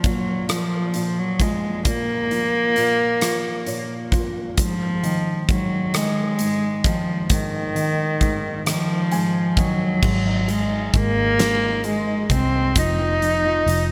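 A slow six-eight lilt carries this aching, melancholic pop ballad cut from a longer piece, with a huge arena drum kit up front, its punchy kick, fat snare and bright cymbals drenched in gated reverb. A reedy, gut-string cello sings the melody with light vibrato and a touch of delay over a soft, intimate felt-muted upright piano with subtle chorus, which adds fills at 3.2 and 8.7 seconds. A dark, round, foam-muted fingered electric bass joins at 10.0 seconds, all set in a plate reverb and a bright 1980s-style digital sheen.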